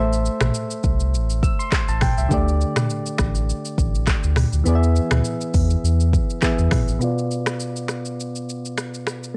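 A lightly swung 16th-note afrobeats groove from an electronic afro-pop drum kit, with its deep kick, smooth hi-hat, finger snaps, handclaps, rim clicks, shaker and toms, drives this mellow fragment as soft, round, warbling vintage electric-piano-like synth keys with chorus move through Am, Dsus4 and E over a full, sine-toned sub bass with octave that drops out at 7.0 seconds, when a filter sweep on the keys carries them to Bdim, all set in a dry, gritty cassette-tape sound.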